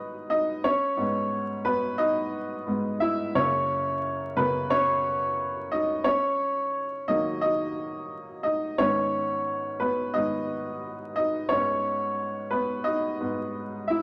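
Vinyl crackle and a moderate large-studio reverb frame a woody, boxy upright piano placed up front, playing alone for the full 14 seconds of this fragment cut from a longer pop piece. At 88 BPM in a straight 4/4 and in G# minor, the mood is bittersweet yet driving, as the piano moves through G#m, E/G#, F# and D#m before returning to G#m. It spans F#2 to E5.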